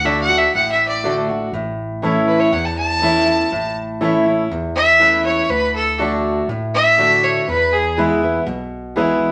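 Country music with an easygoing, sunny mood, moving at 121 BPM in a straight 4/4 feel in A major. A clear, biting fiddle sits up front with light vibrato, its intense bowed line playing a second line from the start until it stops at 8.0 seconds. A full-bodied, picked jumbo steel-string acoustic guitar also sits close in the mix, providing accompaniment across the whole passage alongside a concert grand piano with an open sound in its middle register. Underneath, a worn, slightly out-of-tune tine electric piano takes the bass role with a clean, direct tone. The chords move from D to A, then back to D and on to E, all wrapped in a wet studio reverb, and the 9.3-second passage is cut from a longer piece.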